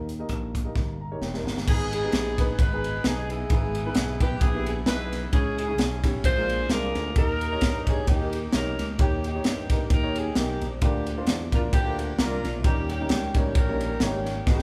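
A woody upright piano and a growly, punchy slap bass open this uptempo gospel excerpt, with a crisp, gritty fusion drum kit joining almost at once in a lightly swung four. Drums and piano share a fill from 0.8 seconds that leads into the main passage, where a smooth-topped saxophone section takes the melody at 1.7 seconds, playing tight with a light jazz vibrato. The mood is soulful and fervent. The bass runs through an envelope filter and sounds bright and direct, while the saturated drums sit up front with a high-tuned snare, a tight kick and a pumping small-room character, adding a closing fill at 14.5 seconds. The band plays live together in one large studio with moderate reverb, and a faint mains hum sits beneath the natural, warm piano.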